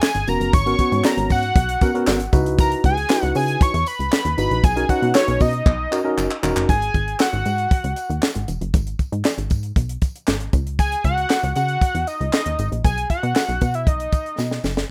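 A straight 4/4 groove at 117 BPM drives this funky, danceable early-eighties boogie funk cut in G# minor, where a dry, up-front funk kit with a high-tuned snare, tight kick, hi-hat and handclaps, fills near 6 and 14 seconds, and a faint, jingly tambourine underpin a punchy, dark analog bass with a plucky filter and ring-modulated edge, while a fat, warbling, detuned analog lead carries the melody through chorus and slapback echo, and a worn, slightly out-of-tune tine electric piano comps over G#m11, C#m11 and Bmaj9 until 6.7 seconds before the harmony shifts to a G#7 with its third omitted, C#sus2 and B, all in a rough home-demo mix with light reverb.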